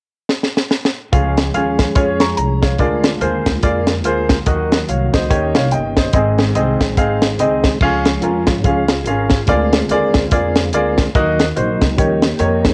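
A cassette home recording in a small room with light reverb captures this jubilant, reverent uptempo gospel cut in Db major, swinging at 144 BPM in 4/4. A dry, tight funk drum kit with bright cymbals and a high-tuned snare opens with a fill at 0.3 seconds, and at 1.1 seconds an up-front, clear baby grand piano, a woody, thumpy pizzicato upright bass on gut strings and a soft tonewheel organ through a fast rotary speaker and chorus vibrato all come in. From 7.8 seconds the flute-like organ takes a solo over the piano's short-sustain accompaniment.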